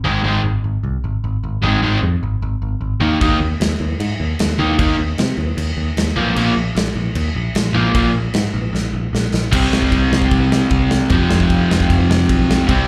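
A dark, compressed overdriven electric guitar with slapback echo riffs up front in this raw, angry punk rock excerpt at 152 BPM, moving through Ab5, Eb5 and Bb5 chords alongside a sludgy distorted guitar in the background and a growly, punchy picked electric bass, while a big acoustic rock drum kit with bright cymbals and a punchy kick enters at 3.2 seconds in half time, plays a fill from 8.7 seconds and drives a new section over C5 and F5 from 9.5 seconds, the whole performance heard as a live club gig through the venue's PA.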